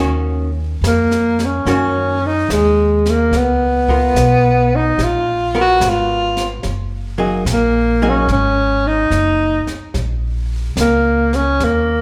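Intimate and wistful, this swung jazz ballad fragment, cut from a longer piece, opens on a dark, clean hollow-body archtop guitar and a woody pizzicato upright bass sitting up front. Brushed drums with a high-tuned snare and punchy kick join at 0.8 s, and a breathy tenor saxophone takes the melody at 0.9 s in a whispered subtone, shaping scooped notes with vibrato. The guitar drops out at 8.3 s as the harmony drifts from Ebm7 through Db6 and Gb69 to Bbm, all carried by the moderate reverb of a recital hall.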